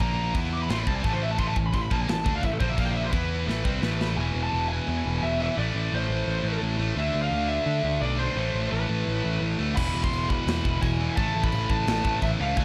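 Warm, lightly reverberant production frames this dark, epic heavy metal excerpt at 172 BPM in A harmonic minor, where a shadowy high-gain lead guitar opens with a solo over chords such as Am, E and D5, supported by a bright, scooped riff guitar, a second distorted riff guitar sitting in the background and an up-front, fuzz-overdriven picked bass, while a tight acoustic drum kit with airy big-room ambience, polished china and crash cymbals and a medium-tuned snare plays a fill from 3.5 seconds, drops out at 4.1 seconds and returns at 9.8 seconds.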